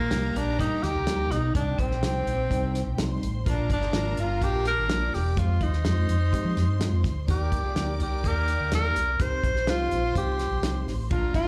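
Heard through a club PA with roomy reverb, this short cut from a longer piece is uplifting, danceable 1960s-style soul at 126 BPM in Eb major, with a breathy, whispered tenor saxophone up front carrying the melody with scooped notes and slapback echo. Beneath it, a round, dark fingered electric bass and a soul drum kit with a fat snare and tight kick drive the straight 4/4 groove, while a mellow tine electric piano and a smooth, tight horn section sit in the background. Lush, woody strings and a very quiet, ringing vibraphone struck with hard mallets fill out the second line over chords moving from Eb through Cm, Bb and Fm.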